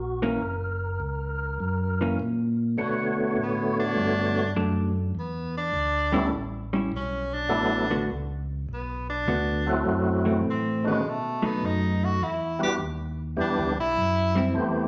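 A bright tenor saxophone takes a soulful jazz solo from 3.4 seconds, its vibrato and scooped notes up front over a smoky, swung B minor groove at 102 BPM that moves through Bm7, Em7, A7, D6 and F#m7b5 to B7. A fat, lightly overdriven tonewheel organ carries the melody with percussive attack, key click and slow rotary speaker, while a second, round and dark organ holds the bass through chorus vibrato. A clean, compressed hollow-body electric guitar fills in the accompaniment, and the whole passage, cut from a longer piece, sits in a large studio reverb.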